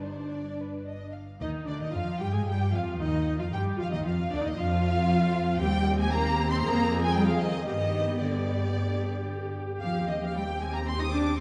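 A quick classical-period movement for string orchestra, this brief passage cut from a longer piece moves at 114 BPM in a straight 4/4 and carries a restless, dramatic mood. The first violins carry the melody with a lush, expressive tone, soft attack and smooth top, while a second violin section adds a focused, vibrato-rich second line. Violas fill the accompaniment with an even, somewhat distant sound, and the cellos and double basses share the bass, the cellos clear and intense with light vibrato, the basses smooth and up front. All five sections play together throughout the full 11.4 seconds. The harmony moves through minor-key colours such as Fm13/D, Cm/Eb and Fm, passing through G before returning to Cm/Eb, and a concert hall reverb with a 2.2-second decay wraps the dark production in a spacious wet glow.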